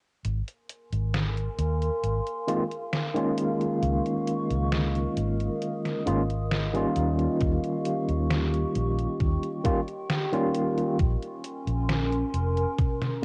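Woozy and nostalgic, this short vaporwave cut at 67 BPM in Ab major drifts over lush ninth chords, with a detuned, overdriven 8-bit drum machine and a round, dark, foam-muted electric bass up front, a warbling, lo-fi tape-like pad laying slow-attack chords with chorus and reverb, a barky, gritty tine electric piano arriving at 2.5 seconds with fast tremolo, tape echo and sampler grit, a thumpy overdriven electronic kick joining at 7.4 seconds, and a drum fill at 12.8 seconds, all wrapped in the haze of a home cassette recording.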